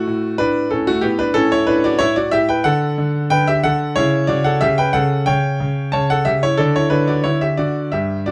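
A smooth, vintage-toned concert grand piano with a deep bass sits up front and plays alone throughout this brief 8.3-second passage, cut from a longer classical-period sonatina in D major. The mood is elegant and graceful, moving at about 91 BPM in 4/4 with a flexible rubato feel, as the harmony settles from A7 onto D at 2.6 seconds and returns to D at 6.6 seconds. Light reverb gives the instrument a gentle sense of space across its span from G2 to A5.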